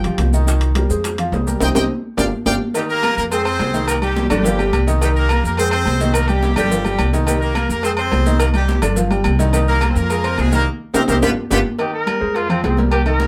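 Salsa with a danceable, passionate drive, cut from a longer piece, where a brilliant trumpet section opens over a worn, open grand piano, a woody, thumpy upright bass up front, round low-tuned bongos and cowbell, distant high-tuned congas, grainy maracas and ringing, dry timbales and agogo bells, then an octave-doubled horn section with vibrato takes the melody from 2.8 seconds, band accents and drum fills punctuate the turns, and a clear, roomy solo trumpet steps forward at 11.8 seconds, all in a small live room.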